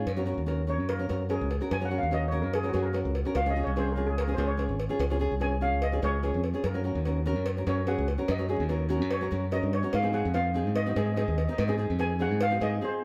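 A straight 4/4 calypso groove drives this bouncy, festive fragment, cut from a longer piece, with a small-room cowbell ticking along almost from the first instant. A bright, growly fingered electric bass sits up front and punchy, while a full-bodied, fingerpicked nylon-string guitar fills in the harmony with a deep classical tone and the occasional finger squeak. The steel pan enters at 0.7 seconds as the shimmering, metallic lead, struck with hard rubber sticks and carrying a slightly boxy character as it solos through the whole passage. The chords cycle through Gb, Db, Gb and Ab, giving the tune a sunny, sing-along lift. The band sounds like it is playing live together in one room, bathed in a moderate studio reverb, and the bass drops out at 12.8 seconds for a brief break just before the end.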